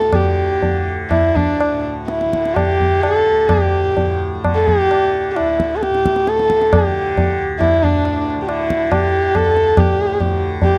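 This short Hindustani classical passage opens with sarangi, tanpura and tabla sounding together, in a devotional and radiant mood. The sarangi carries the melody up front, a single bowed voice with a dark, nasal tone, a soft attack and light vibrato, gliding between notes with an airy bow while its sympathetic strings ring along. Beneath it, the tanpura holds a low drone that buzzes and shimmers, softly plucked and sitting well back in the mix. The low-tuned tabla keeps time in a seven-beat cycle with a straight feel, its strokes close and dry with a short ring. Across the 10.8 seconds the tempo steadily speeds up. The sound is a dry, close studio capture in a 1970s style, with little reverb.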